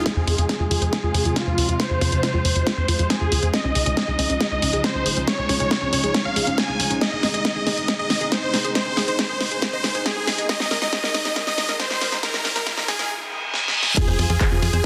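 Uplifting trance at 138 BPM in F minor, this emotional, euphoric passage is cut from a longer piece and plays as one long build-up, moving through Fm, Dbadd9, Ab and Ebsus4 before landing on F5 at 14.0 seconds. Huge, lush supersaw chords carry the melody up front, bright and detuned, with a filter sweep running through them alongside digital delay and sidechain pumping. Beneath them a tight, dark sequencer bass drives with fast-attack, decaying sawtooth and square tones, while a round analog pluck spins arpeggios in the background, treated with chorus, delay and its own filter sweep. A chamber string section sits distant and floating, its soft-attack bowed chords ending at 13.9 seconds. The punchy, layered electronic kick and an up-front techno kit with a cracking snare and handclaps, re-recorded in a large room, push through drum fills, while a very quiet riser, reverse cymbal and sub drop enter at 11.9 seconds and lead into an impact, all within a dense, heavily limited modern master with light reverb.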